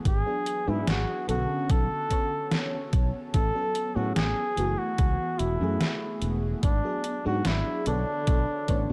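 A slow, straight 4/4 pulse at 73 BPM comes from a thumpy, overdriven electronic kick and a detuned 8-bit drum machine whose up-front snare and hi-hat are gritty with overdrive and gated reverb, setting a woozy, nostalgic vaporwave mood in this short cut from a longer piece. A lush, dreamy FM electric piano with a soft pad layer carries chords from G#m7b5 through Bm9, Amaj13 and F#m11, shimmering with phaser, chorus, cassette-tape wear and tape echo. Up front, a fretless bass sits direct and warm under a jazz-style flugelhorn solo of warm vibrato and scooped notes trailed by tape echo.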